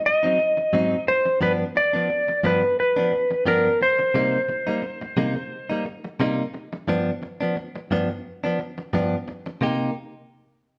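A clean, up-front lap steel guitar sings a smoky, mournful slide melody with volume swells until 5.8 s, while a bright, twangy, scooped electric guitar recorded direct adds picked stabs through 9.9 s in this swung 88 BPM C-minor blues moving from Ab7 and G7 to Cm7, played live in one room with moderate large-studio reverb.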